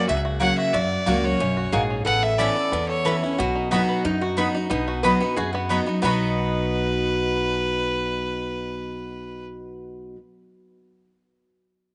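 A biting, nasal bowed fiddle with light vibrato sits up front in this lively, virtuosic bluegrass excerpt at 181 BPM in B major, playing from the start until 3.3 seconds and returning at 6.0 seconds. Beneath it, a twangy fingerpicked banjo carries the melody while a metallic slide resonator guitar adds a second line, and a bright dreadnought acoustic guitar, complete with finger squeak, picks out the accompaniment over an F#, Aadd9 and B progression. A growly pizzicato upright bass anchors the low end, a woody double-strung mandolin adds stabs from the background, and a moderate plate reverb wraps the whole performance.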